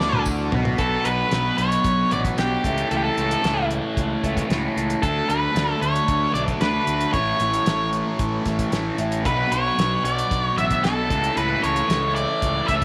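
Set in a light studio reverb, this mysterious, hypnotic psychedelic rock passage opens with a short drum fill from a cloth-damped, thuddy kit with a fat snare and tight kick, before settling into a straight 4/4 groove. Up front, a bright, double-tracked thick fuzz guitar pushes a phased riff beneath a dark octave-fuzz lead guitar melody trailed by tape echo, while a round, punchy fingered bass adds overdriven grit. A mellow combo organ holds very quiet sustained chords, and a softly plucked, buzzing tanpura shimmers as a faint drone until 7.7 seconds.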